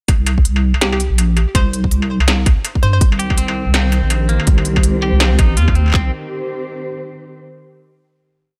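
Half-time drum and bass with a dark, heavy mood, built on a deep wobbling bass with tube saturation and chorus that sits up front beside a trap kit's hard-clipped kick and claps, while an industrial kit adds clanging snare, crisp hats and struck metal in a sparse beat. A hollow, nasal square-wave pluck plays short answering phrases with digital delay from 0.8 to 3.0 seconds. Then muted cellos enter with veiled, slowly shifting chords under sidechain pumping and a twangy clean electric guitar loops a 10-step arpeggio through tape echo and harmonic tremolo, the cellos holding a final chord until 7.4 seconds.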